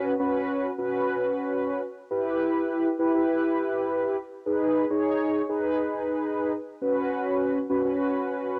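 In a straight 4/4 pulse at 102 BPM, this short pop fragment in B major feels bright yet wistful as it moves through Bsus2, Em, G#m and back to Bsus2. A mellow synth brass plays alone for the full 8.6 seconds between C#4 and C#5: round, warm and brassy, built on a detuned sawtooth with a fast attack, a filter swell and sustained notes, and sitting up front in the mix. Its dark tone carries chorus, tape echo and cassette coloring, and a short, wet booth ambience gives it the intimate feel of a home recording on cassette.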